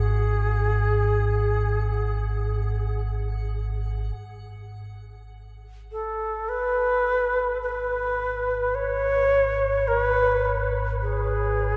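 A bright, reedy shakuhachi carries the melody up front with vibrato and a breathy chiff, its tongued notes trailed by tape echo, in this vast, ominous dark ambient drone piece in free time. Beneath it a deep, rumbling drone sits up front with subtle chorus and its own reverb, and an icy, crystalline glass pad glints faintly above until 4.2 s, when the harmony drops away and a filter sweep begins moving through the drone. Everything hangs in a huge, echoing space with a long, wet reverb tail, and the passage is cut from a longer piece.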